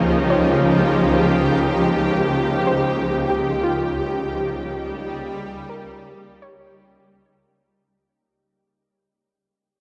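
Ambient music in free time, this short excerpt from a longer piece feels luminous and serene, resting on a single Eb/Db chord. A shimmering pad carries sustained chords from Db2 up to G4, sitting up front with an ethereal, octave-up glow, a slow attack and a long release, thickened by chorus and its own built-in reverb. Behind it, a soft, round pluck plays gentle arpeggios between F4 and Db5, its mellow tone decaying after a fast attack and colored by chorus, cassette tape character and tape echo. The whole recording sits in a lush hall reverb with a 2.9-second decay and carries a worn, warbling old-tape quality with drifting pitch. A fade-out begins at 1.3 seconds and runs to 8.0 seconds, with the pluck lingering until 8.4 seconds.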